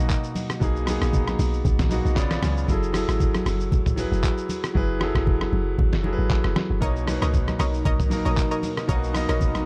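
A deep, round log drum bass with a fast, percussive attack and a decaying, dark tail anchors this relaxed, soulful amapiano piece at 116 BPM in B major, with a light swing on the sixteenths. Up front, a brilliant concert grand piano carries the accompaniment with polished, long-sustaining chords moving from Bmaj9 through C#7b9 and F#m9, and it adds a short fill at 1.9 seconds. The lo-fi sampler-style kit sounds compressed, pitched down, muffled and tape-warm, with a thumpy kick, medium-tuned snare, handclaps, rim clicks, shaker, toms and hi-hats that drop out between 4.8 and 6.8 seconds. Thin-skinned congas struck with hard hands sit in the background. A chorused analog pluck with short, detuned stabs and a touch of delay appears at 6.8 seconds, and an airy, breathy pad follows with soft sustained chords that pump against the beat. The production is dark and dry, and this excerpt is cut from a longer piece.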